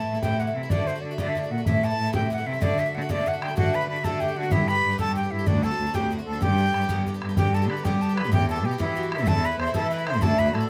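Lightly reverberant, this bright, cheerful Celtic jig excerpt in G major moves at 126 BPM in 6/8, with an airy concert flute singing the melody up front with vibrato and a soft attack over picked, metallic double strings of an Irish bouzouki, an earthy bowed cello bass played by one player with light vibrato, and a boomy, vintage-sounding bodhran, while a reedy accordion with slow beating adds a second line from 3.6 seconds before the tune shifts into a new section at 7.4 seconds.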